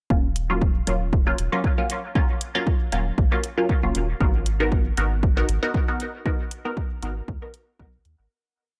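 A filtered dub chord stab stands out in this short, hypnotic dub techno piece, its muted, detuned sawtooth and pulse tones plucked through a filter with a fast attack and short decay, then smeared by phaser, dub echo and sidechain pumping. The stabs play dotted-rhythm chords, moving one shape in parallel from Ebm7 to Abm7 at 4.2 seconds, and they sit up front despite their deep, wave-folded character. Beneath them a soft, round sub bass made from triangle and square waves holds a sustained dub-style line that also pumps with sidechain compression. A dry, punchy analog kick drives a four-on-the-floor pulse up front, while closed electronic hi-hats with a light swing mark the hats and backbeat from 0.4 seconds. The nocturnal groove runs throughout in a dry, gritty hardware sound with transformer saturation and little room, fading out from 5.6 seconds to its close at 8.3 seconds.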